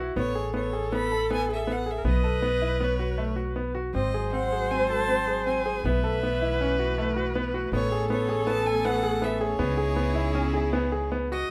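A brilliant baby grand piano, up front with audible action noise and long sustain, spins arpeggios through this restless, hypnotic excerpt of contemporary chamber music in 5/4, over a woody, growly pizzicato upright bass, while a solo violin with an airy bow and light vibrato carries the melody, a focused, smooth-topped viola adds a second line, and a biting symphonic string section enters at 3.9 seconds with sustained background chords, all captured by close, detailed microphones with light reverb.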